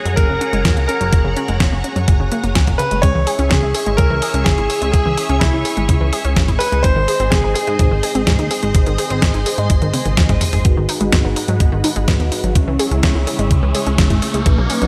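An italo disco cut at 126 BPM in C# dorian, melodramatic and bittersweet, opens with a bright grand piano carrying the melody over lush, vintage string-machine chords softened by ensemble chorus and a punchy, detuned unison pluck playing arpeggios through digital delay. The piano is brilliant and intimate, with audible action noise, long sustain and tape echo, and it carries the tune until 10.1 seconds. Beneath it, a glossy, saturated synth bass and a thumpy, tape-warm electronic kick anchor a straight 4/4 groove, joined by a sampler-style drum machine with a fat snare, hi-hat and toms in studio reverb. The harmony moves from F#add9 to C#m and G#, and a drum fill leads into a second section at 10.7 seconds. There, full-bodied, evolving polysynth stabs sit in the background with digital delay, filter sweeps color the string machine and the polysynth, and an electronic riser builds from 12.5 seconds over G#m7 and C#m as the excerpt cuts off.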